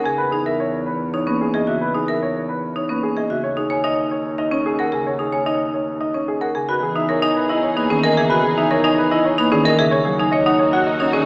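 Bright, percussive hard-mallet marimba arpeggios drive this propulsive, bright minimalist classical pattern piece in 3/4 at 111 BPM in E lydian. From the start they are joined by a clear, present concert grand piano melody, a woody, rustic soft-mallet folk marimba accompaniment and a smooth bowed double bass. A lush, distant violin section adds sustained chords from 6.7 seconds. Everything sits in a wet scoring-stage reverb, heard from further back with a small-speaker sound, as the harmony moves from Emaj7#11 to a D#7 lacking its third and later D#m7 in this excerpt from a longer piece.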